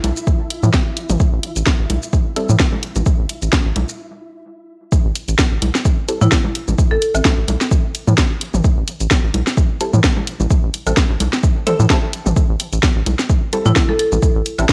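Swung 16ths at 129 BPM drive this hypnotic, sparse minimal techno excerpt in A minor, where a punchy overdriven kick arrives at 0.3 seconds over a rubbery, nasal square bass with sidechain pumping, a garage kit with a cracking snare, hi-hat and shaker, electronic congas, toms and woodblock, and a flickering grainy texture that ends at 4.0 seconds. A dark, detuned dub chord stab with phaser, sampler grit and analog delay flashes briefly at 2.4 seconds, and after a short break and the drop at 4.9 seconds it returns at 6.1 seconds, along with brief phrases from a woody, hard-mallet marimba, all captured with a cassette home-recording character.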